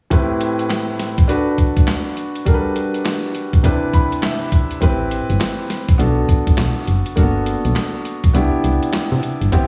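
A swung sixteenth-note groove at 102 BPM drives this slick, bouncy new jack swing excerpt in A dorian, built on a gritty, pitched-down sampler drum kit with a thumpy kick, high-tuned snare, handclaps and hi-hat, compressed and given gated reverb up front in the mix. A natural-sounding grand piano sits up front on Am7, Bm7, Gmaj7 and Cmaj7 chords and plays a fill from 3.6 to 4.8 seconds, when a punchy, round FM bass with a dark, digital tone enters. The kick drops out at 8.3 seconds, and a light small-room reverb frames the whole sound.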